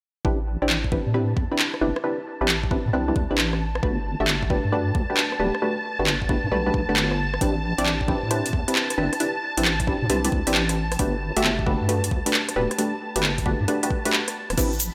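A punchy, bright chord stab sits up front in this moody, soulful two-step UK garage excerpt at 134 BPM in A dorian, its chorused, dub-echoed sawtooth stabs carrying a filter sweep as they move between Am11 and Gmaj7. A deep, wobbling square-and-sine bass anchors the low end while a knocking, overdriven electronic kick and an up-front garage kit of metallic hats, handclaps, rim clicks and crash cymbal drive the swung 16th-note groove. Above them a silky, vintage string machine holds sustained chords with ensemble chorus and sidechain pumping, and a grainy egg shaker enters only at 14.6 seconds.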